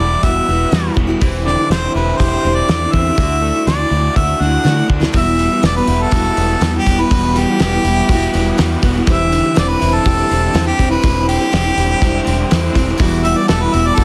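A straight 4/4 pulse at 122 BPM drives this wistful, dusty folk rock and heartland rock excerpt in E minor, where an up-front harmonica with light vibrato, slapback echo and plate reverb carries the melody and takes a solo from 5.1 seconds over bright picked acoustic guitar, a double-tracked crunchy overdriven guitar riff, foam-muted fingered bass and a cloth-damped thuddy drum kit with a fat snare that enters at 0.2 seconds and fills just before the solo, while a very quiet flute-like tonewheel organ through a slow rotary speaker joins at 4.8 seconds, all under heavily compressed radio-style sound as the harmony moves through Emadd9, Cadd9/E and Dadd9 chords.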